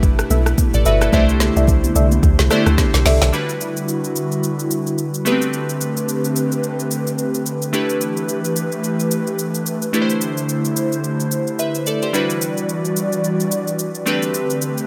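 This excerpt from a longer amapiano track opens on a drop at 109 BPM. Up front are a round, percussive log drum bass, glassy, warbling digital keys with chorus, an airy, breathy pad with chorus and sidechain pumping, and an electronic afro-pop kit, with very quiet, high-tuned congas beneath. At 0.3 s a dark, nasal, full-bodied chord stab joins, coloured by chorus and delay. The 16ths swing at 58%, giving a warm, relaxed feel over a cycle of G69, C69, Em9 and Am11 chords. A drum fill at 2.8 s leads into the next section at 3.3 s, where the log drum and stab drop out, leaving the vintage keys, the soft pad and the kit's deep kick, woody snare, metallic hats, rim click and shaker in light reverb.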